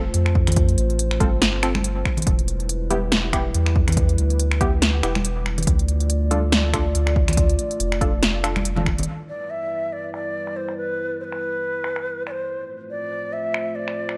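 Set in a light reverb, this heavy, cavernous deep dubstep piece with a swung half-time feel opens on a moody, nasal analog pad, muted, detuned dub chord stabs with chorus and dub echo and a round, soft sub bass, joined within half a second by an up-front deep house kit of finger snaps, smooth hats and snare, a punchy electronic kick and bright thin-skinned congas in the background, until at 9.3 s the stabs, bass, kick and congas have dropped away and a breathy, reedy ney with vibrato and dub echo carries the melody over the pad while a filter sweep runs across the drums from 9.1 s.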